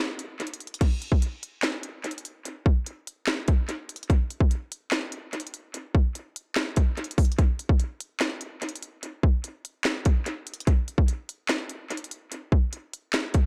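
An echo-heavy mix with light reverb frames this dark, menacing hip hop excerpt at 146 BPM in a half-time 4/4 feel, where an up-front electronic trap drum kit enters at 0.2 s with a hard-clipped kick, sharp snare, crisp hi-hats, handclaps and crash cymbal, all roughened by vintage 12-bit sampler grit and trailed by analog delay.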